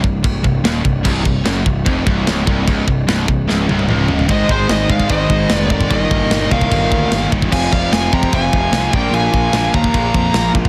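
Relentless and epic, this heavy metal excerpt in C minor charges along at 148 BPM, with an up-front growly fuzz bass and a gritty, saturated drum kit with china and crash cymbals driving beneath bright overdriven and distorted riff guitars (a double-tracked high-gain guitar joining at 1.0 s), until a drum fill at 3.5 s opens the way for dark high-gain lead guitars at 4.3 s, a melody over a quieter second line, as the chords move from Cm through Ab, Eb/G and Fm to Bb5 in a dense, dry, heavily limited master.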